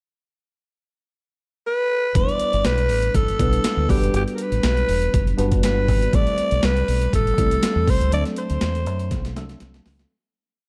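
A dark, warm production with light digital reverb frames this short, glossy, urban piece of polished 1980s jazz-funk pop at 120 BPM in 4/4, with a gentle swing on the sixteenths, moving through Em7, Gmaj7, Am7 and D7 after a brief pickup bar. A raspy, breathy alto saxophone sits up front from 1.7 seconds with a motif-based jazz melody and light vibrato, over a worn, slightly out-of-tune electric piano pushing drop-2 chords through overdrive and chorus, and a round, punchy fingered bass line full of slides and chromatic approach notes. A gritty, compressed sampler-style drum kit with a thumpy kick drives a crisp sixteenth-note groove, closing with a drum fill from 9.1 seconds as the piece fades out from 8.1 seconds.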